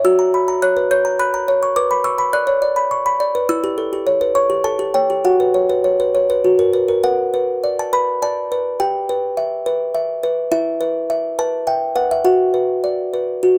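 Eerie and fragile, this classical lullaby in a straight three-beat metre is carried entirely by a solo music box. The plucked, tinkling tones sit up front with a small-box character and a slightly out-of-tune edge, captured by close, detailed microphones in a dry space. The short cut moves from an opening passage into a second section at 7.0 seconds, with the melody ranging from the middle register up to high, delicate peaks.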